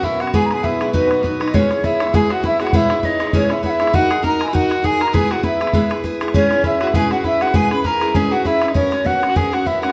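An airy wooden flute carries the melody with vibrato and a soft attack from a distant position in this bright, cheerful Celtic reel, taken from a longer piece and moving at a swung 200 BPM in 4/4. Beneath it, a dark, nasal fiddle with a gut-string tone bows a second line, while a bright, boxy picked steel-string acoustic guitar sits up front and a damped, tight bodhran keeps the beat. A full, reedy accordion drone hums in the background only until 1.6 seconds, and a moderate recital-hall reverb surrounds the group as the chords move from E/B and B through C#m/B and D#m to a closing F#/B.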